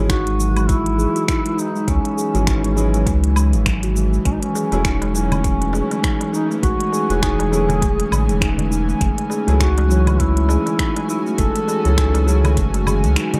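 A 4/4 groove at 101 BPM swings its sixteenths, carried by a deep, layered electronic kick and an organic electronic kit of crisp hi-hats, cabasa, finger snaps and woodblock with tape echo, while a small, crisp metal-shell darbuka joins in the background at 4.6 seconds. This is meditative, earthy organic downtempo, cut from a longer piece, moving through C#m, Amaj7 and F#m7. A round sine sub bass sits up front, pumping against the kick, beneath an airy, breathy pad with chorus and a slow attack holding sustained chords. A steel tongue drum struck with firm rubber mallets rings out pure arpeggios through gritty 12-bit sampler texture and dub echo, and a soft felt-muted upright piano adds intimate, vintage accompaniment in the background. Over it all, a distant duduk sings the folk-style melody with vibrato and scooped notes, trailed by dub echo and shimmer reverb in an echo-heavy mix that breaks at 13.2 seconds.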